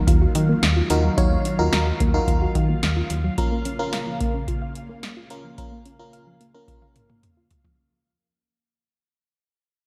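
An up-front electro analog drum machine drives this nocturnal synth-pop excerpt at 109 BPM in 4/4 with a straight feel, its deep kick, punchy snare, metallic hats and toms carrying a tape-tinged analog character, capped by a drum fill at 6.7 seconds. A solid FM bass adds a round, dark, punchy low end with a fast attack and decaying notes, dropping out at 3.3 seconds as the harmony moves from Ebmadd9 to Bb minor. A soft, gentle pluck plays arpeggios with a full-bodied, detuned tone and a moving notch, treated with chorus and tape echo. A glassy FM electric piano with a bell-like attack supplies accompaniment, colored by chorus and slapback echo. A vintage string machine with cellos holds slow-attack sustained chords, its sawtooth tone deepened by a sub octave and shimmering with phaser and ensemble chorus. A lush hall reverb gives the mix a big arena sound as the whole passage fades out.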